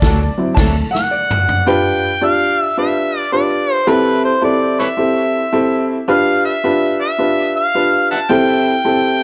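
A brief band accent opens this joyful, swinging 1960s-style soul excerpt, with mellow horns, lush bowed strings, a round, foam-muted electric bass and a punchy big-band drum kit sounding together for under a second as the drums roll into a fill, while a woody, slightly detuned upright piano carries on throughout and a gritty, overdriven harmonica with tape echo takes the melody from 0.9 seconds in a dark, roomy mix.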